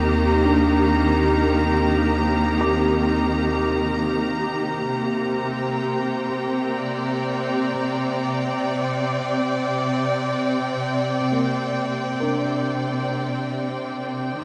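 Bathed in a vast cathedral reverb and carrying the grain of cassette tape, this ambient passage, cut from a longer piece, drifts in free time with a melancholic yet serene mood. A lush, up-front string section holds smooth, bowed chords with rich vibrato throughout, moving from an Eb harmony to a Csus2. Beneath it, a deep, ominous drone rumbles with a nasal, detuned edge, joined by a very quiet, tense string-like drone with its own vibrato and noise layer, and both drones drop out by 5.0 seconds. A soft, felt-muted upright piano plays dark, mellow arpeggios in the background, its action noise audible and its notes trailing into a diffuse ambient delay. From 4.9 seconds the piano gradually fades in, adding an intimate glow beneath the strings as the excerpt closes.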